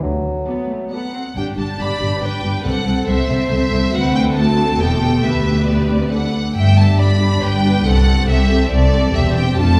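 A mellow solo bassoon opens this short cut from a quick, spirited classical-period movement for symphony orchestra, sounding for just under a second over cellos and double basses that carry the bass line from the start. At 0.5 seconds the upper strings join: a lush violin section takes the melody high in its range, a woody, dark second violin section adds a line beneath it, and an intimate viola section fills in the accompaniment with light vibrato. The cellos play with expressive vibrato and touches of portamento, while the double basses sit soft-attacked and distant beneath them. At 139 BPM in a straight 3/4, the cheerful music moves through G major harmonies, including Am/C, D7 and Em, before reaching C/E. A wet scoring-stage reverb places the orchestra further back in the hall, lending the ensemble a spacious, resonant glow.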